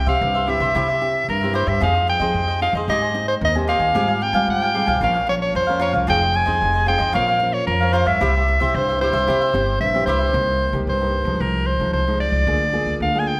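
A lively, nostalgic samba cut from a longer piece opens with a bright, punchy soprano saxophone carrying the melody up front in a forceful jazz style with light vibrato, over fingerpicked nylon-string guitar with audible finger squeak, a woody, thumpy pizzicato upright bass and a crisp, picked cavaquinho. The cavaquinho drops out at 10.3 seconds as the harmony turns minor, leaving saxophone, guitar and bass to close. A reverberant church or concert-hall acoustic surrounds the whole ensemble.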